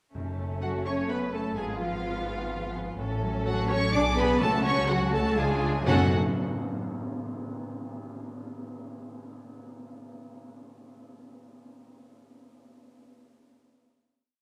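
Dramatic and stormy, this fast romantic movement for symphony orchestra in F# minor drives along at 126 BPM in 3/4, its lush bowed violins carrying a smooth, vibrato-rich melody high above while violas and cellos double the tune at the octave, the second violins sustain tremolo chords, and a rich double bass section anchors the harmony. A ringing concert harp plays broad broken chords in the background, timpani struck with hard mallets mark the bass notes at the opening and again from 4.4 s, and dark cymbal swells with gong strokes enter at 3.0 s. Set in a wet concert hall, the whole piece closes on an accented F# minor chord at 5.9 s.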